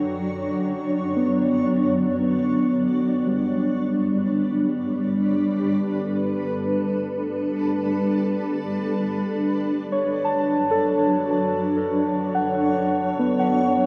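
Ambient music in free time, melancholic and serene, cut from a longer piece and tuned to A4 = 442 Hz. A granular cloud pad sits up front, holding sustained chords that feel blurred and mellow, its slow attack and long release letting the detuned, evolving texture drift through its own built-in reverb. Alongside it, muted felt-like synth keys play arpeggios with a fast attack and decaying tone, their intimate, dark character shaded by a noise layer and ring modulation, with chorus and tape echo on them. The keys fade in across the whole 13.9 seconds while the harmony moves from Dmaj7/F# to G at 3.1 seconds and back to Dmaj7/F# at 9.4 seconds. A cathedral reverb with a 5.7-second decay surrounds the whole recording, giving the dark production a vast, hazy sense of space.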